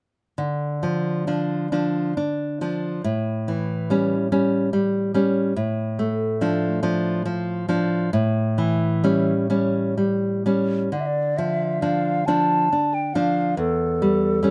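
A fingerpicked nylon-string guitar opens at 0.4 s, full-bodied and up front in a yearning, melancholic romantic duo, its classical accompaniment moving through a rubato 6/8 with finger squeaks audible. At 10.9 s a silver concert flute enters with the melody, its pure, hollow tone carrying vibrato and tongued notes. The close, detailed microphones and dry room keep both instruments intimate, and this excerpt is cut from a longer piece.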